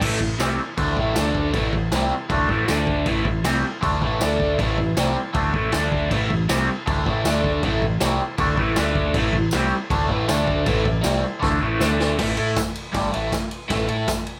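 Swaggering and raw, this garage rock excerpt pushes a bright, double-tracked guitar riff with overdrive and phaser up front over a dark, round hollow-body bass with overdrive and a gritty, boomy small-room drum kit. A buzzy vintage combo organ holds sustained chords in the background, adding fills at 8.4 and 11.4 seconds, with the drums joining the second fill. A jingly tambourine rides behind while the chords rock between Am and D5 before settling on A5 at 12.2 seconds.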